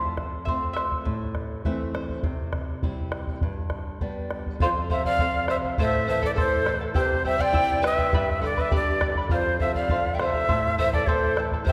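An airy, cane-toned quena with unsteady vibrato and a breathy chiff sits up front from 4.6 seconds, joined by a polished wooden pan flute on a second line, in this festive yet wistful Andean folk excerpt in A minor at 102 BPM, where a shimmering, fingerpicked charango and a fresh-stringed flamenco guitar open the piece, the guitar adding a fill from 1.4 seconds, over a round, close and dry bombo, within a wet concert-hall reverb.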